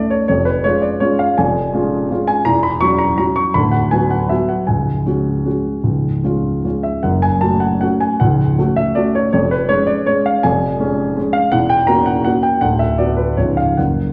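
A warm baby grand piano plays alone throughout this short classical waltz, its natural tone and short sustain sitting up front even as the listener seems placed further back in a recital hall with a wet, lingering reverb. The feel is rubato in 3/4, with a nostalgic, wistful mood carried by a chord progression that moves through minor and suspended colours before ending on a C#7 near 13.4 seconds. Cut from a longer piece, it spans from the deep bass to the upper treble.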